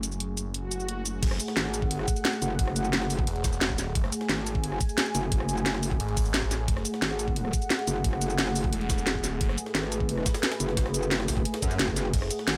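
A straight, driving pulse anchors this dark, aggressive slice of technical drum and bass, where an up-front kit of cracking snare, bright hats, cabasa, rim clicks and crashes is joined at 1.2 seconds by a knocking electronic kick and a very quiet, gritty, pitched-up jungle sampler-style kit with a high-tuned snare and ride. Beneath a deep, moody analog pad with chorus and sidechain pumping, a swirling, thick phased detuned saw bass growls with overdrive, while a metallic, wobbling FM bass with distortion and chorus enters at 1.6 seconds. A faint, warbling lo-fi tape-like pad opens the excerpt and is joined by an electronic swell at 0.6 seconds before the drop lands at 1.2 seconds, all set in a light digital reverb.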